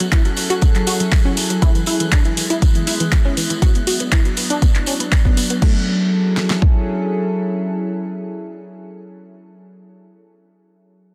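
A dense, heavily limited mix with light digital ambience carries this bittersweet, emotional progressive house excerpt at 120 BPM in F# minor, where a deep kick and fat snare sit up front, metallic hats, handclaps and crash cymbal drop out at 5.7 seconds alongside a jingly tambourine in the background, a detuned sawtooth unison pluck plays arpeggios under a filter sweep with delay and sidechain pumping, an evolving, warbling wavetable pad holds mellow chorused chords, and a faint glassy texture of drifting overtones hovers on F#6 until 5.6 seconds.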